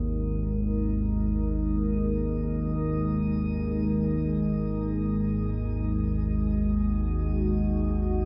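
This dark ambient drone drifts in free time with a cavernous, ominous mood, holding a single G#5 chord across the whole 8.3-second excerpt. A low analog drone built from detuned sawtooth, pulse-width-modulated and wave-folded tones sits up front, warbling and evolving through its chorus. Over it, a deep, moody pad sustains dark sub-octave chords, its sine and unison sawtooth layers spread by chorus and shimmer reverb, and both parts sit inside a wet spring reverb.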